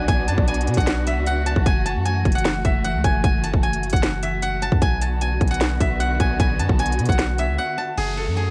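A dry home recording on cassette with vinyl crackle frames this brooding, menacing trap cut, taken from a longer piece and set at 152 BPM in a half-time 4/4 feel in F# minor. A bright, silvery steel-string zither, played with fingerpicks and sitting up front with a cassette-tape tint, carries the ringing melody over a studio string section. Those bowed strings, also on cassette, hold sustained chords with vibrato, portamento and a smooth, expressive top as the harmony moves between Bm and F#m7. Underneath, a deep, mellow sine-like 808-style bass sustains long notes with a fast attack and a decaying tail. The electronic trap drum kit enters at 0.1 seconds, forward in the mix with a hard-clipped kick, sharp snare, crisp hi-hats and finger snaps, then stops at 7.5 seconds just before a short break. An electronic downlifter arrives at 8.0 seconds to close the passage.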